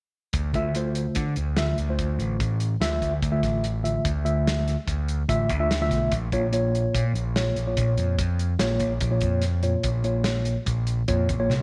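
Tense and intricate, this progressive instrumental excerpt in 7/4 at 145 BPM sets a dark, punchy overdriven picked electric bass up front alongside a mellow, clean tine electric piano played through its built-in speakers, over a tight, rolled-off soul drum kit of hi-hat, kick and snare in a small room, all wrapped in a moderate echo chamber reverb as the chords move from Dmadd9 to Bbm at 6.1 seconds.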